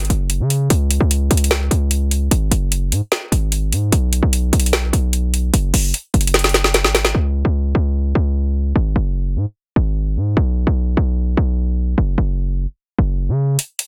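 The rhythm sits in a half-time 4/4 feel at 149 BPM, giving this brooding, hard-hitting trap cut from a longer hip hop piece a heavy, deliberate stride, tuned slightly flat to A4 = 438 Hz. An electronic trap drum kit sits up front with a woody snare and metallic hi-hats, closing its opening stretch with a drum fill that runs to 7.1 seconds. From there the 808-style bass carries on alone. Its punchy sine tone has a noise layer on top, a fast attack and a decaying tail, and it ranges from F#1 to C#3. At 13.6 seconds the bass stops and the drums return briefly for a break. The mix is dry and the master is dense and heavily limited, with both parts pushed forward.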